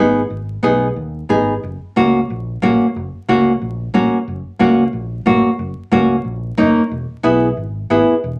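Cumbia with a danceable, fiery mood, this short fragment puts a full-bodied, fingerpicked classical nylon-string guitar up front over a round, dark, direct and amped fingered electric bass, moving from G#m to F# at 1.6 seconds and on to E at 6.9 seconds, all set in a wet club reverb with vinyl crackle.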